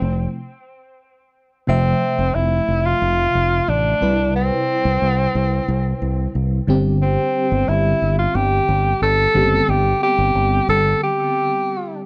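A dry, close studio sound with light reverb frames this glossy, nostalgic 1980s-style pop excerpt at 90 BPM, where an up-front tenor saxophone carries a vintage, vibrato-tinged melody over a warm FM electric piano with tremolo and phaser and a round, punchy fingered electric bass that drops out at 10.9 seconds, moving through Fmaj7, Cmaj7 and Gsus4 with a stop from 0.4 to 1.7 seconds and a closing break at 11.0 seconds.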